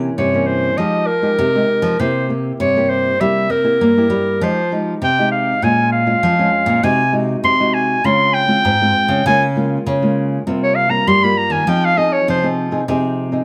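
Samba and choro with a yearning, nostalgic mood, cut from a longer piece, where a clear, present clarinet carries a classical-style solo melody with plate reverb over one full-bodied, fingerpicked nylon-string guitar with fresh strings playing accompaniment up front and a second, dark nylon-string guitar holding the bass with audible finger squeak, all in a moderate studio ambience as the chords move from C7b9 through Fm9, Bbm7 and Dbmaj7 to settle on Fm7 at 11.7 seconds.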